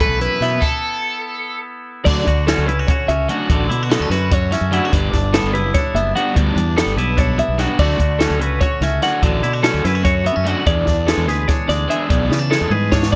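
A brisk 7/8 pulse at 293 BPM in eighths drives this bright, wistful stretch of math rock and midwest emo, cut from a longer piece. A crunchy overdriven guitar sits up front with a short melody that lasts only until 1.6 seconds, while a twangy electric guitar with spring reverb and a bright twelve-string electric guitar spinning arpeggios run through the whole passage. Underneath, a growly fuzz bass played with the fingers pushes forward beside a dry, punchy cocktail drum kit with a high-tuned snare and dark cymbals. After a stop from 0.6 to 2.1 seconds, a double-tracked raw garage guitar enters with an overdriven riff as the harmony moves from B7sus4 through Dmaj7 and Gmaj7 toward E7. A drum fill closes the passage from 12.3 seconds, all set in a light reverb.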